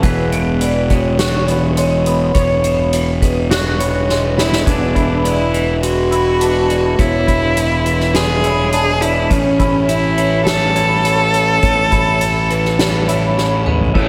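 Post-rock with a euphoric, cinematic mood, this excerpt of a longer piece moves in a straight 4/4 over an Eadd9 chord that gives way to A at 9.3 seconds. A clean, twangy electric guitar plays compressed, picked arpeggios with ensemble chorus and digital delay, alongside a vibraphone struck with hard mallets whose metallic, ringing arpeggios carry a slow motor vibrato and their own delay in a boxy small room. Very quiet in the background, a pedal steel guitar holds sustained chords with fingerpicks, slide and volume swells. Underneath, a fuzz fingered bass sits dark, round and overdriven up front, while an acoustic drum kit played with soft mallets brings a boomy kick, a medium-tuned snare, toms and dark cymbals, with a fill leading into the second section and another at the close. A clear, focused cello enters at 4.4 seconds to carry the bowed melody close and up front with vibrato and delay until 13.3 seconds, all within light reverb and studio ambience.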